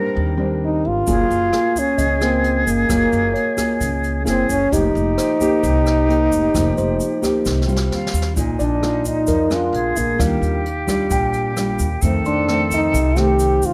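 Light reverb surrounds this bossa nova, with a breathy, close-miked trombone carrying the melody up front. It moves at 131 BPM in a straight 4/4, with a sophisticated, sunny mood, and it is cut from a longer piece. A silver concert flute adds an airy second line with vibrato and a soft attack, while the trombone plays in a mellow jazz style with light vibrato. Underneath, a thumb-plucked nylon-string guitar with fresh strings and a clean tine electric piano in the background share the accompaniment. A woody, thumpy pizzicato upright bass anchors the low end, and at 1.1 seconds a brushed drum kit with a boomy kick and a grainy, bright tube shaker join in. A drum fill from 7.5 seconds leads into a new section at 8.4 seconds, where the lush extended jazz harmony turns toward suspended and altered dominant chords.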